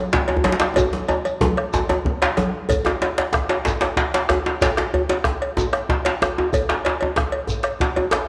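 A straight 12/8 pulse at 125 BPM, felt in dotted quarters, drives this earthy, powerful West African traditional drum ensemble piece, cut from a longer performance. Two djembes play tight, cracking hard-hand strokes: one carries metal rattles and sits in a live room, while the other is compressed, saturated and up front. Alongside them a round, close bombo anchors the low end, a dry metallic cowbell enters just after the start, and a grainy, mellow shekere stays in the background. Ringing, medium-tuned congas played with soft hands join the opening, with a drum fill running from 0.8 s until they stop at 2.7 s, where a second section begins. The whole ensemble sits in a wet echo chamber that gives the drumming a spacious, resonant air.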